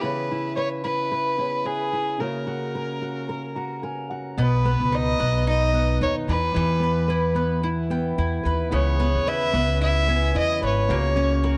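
The recording sounds like a worn, warbling old cassette tape, with a wavering pitch drift, a dulled top end and a light reverb. This is a heartfelt, carefree acoustic pop piece in B major at 110 BPM in 4/4, with a gentle swing on the sixteenths, cut from a longer piece. A single dark, bowed violin with vibrato carries the melody up front, over a fingerpicked steel-string acoustic guitar and a warm, open upright piano sitting in the background; the piano plays a fill at 3.3 seconds. At 4.4 seconds a woody pizzicato upright bass comes in up front, along with a bright bowl-back mandolin picking arpeggios on its double strings. The piano drops out there and returns at 8.7 seconds with its long sustain, as the harmony moves from C#m7 and F#/C# through B and Em and back again.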